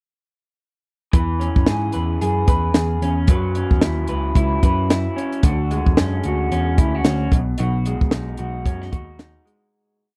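Hazy and dreamy, this short indie pop and bedroom pop piece moves at 112 BPM in 4/4 with a loose sixteenth-note swing in E major. An electric guitar through a small old amp carries the accompaniment with a fingerpicked roll pattern, its slightly broken-up, lo-fi tone thickened by lush chorus and a warbly pitch drift. A worn, slightly out-of-tune tine electric piano plays the bass part through its built-in speakers, shaping a rounded, melodic line with slides. A compact cocktail drum kit sits up front with a high-tuned snare, a punchy kick and hi-hat, giving a relaxed, dry backbeat. The harmony drifts from E6 through F#7sus4 and Dmaj9#11 to B6 in a single verse that fades out from 7.6 seconds, and the whole take has the dry, close sound of a 1970s-style studio.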